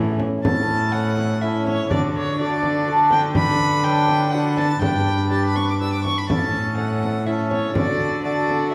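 In a straight 3/4 at 123 BPM, this festive, stately renaissance-style consort dance in A mixolydian opens with a gut-string violin up front on the second line, a nasal viola with an airy bow, and a rich, reedy cello bass, alongside a mellow, fingerpicked double-strung lute in the background. A frame drum struck with hard hands joins at 0.2 s, and at 0.4 s a vibrato oboe takes the melody, sitting quietly in the background. Heard from further back in a reverberant recital hall, this short cut from a longer piece moves through A, D, B minor and G before returning to A and D.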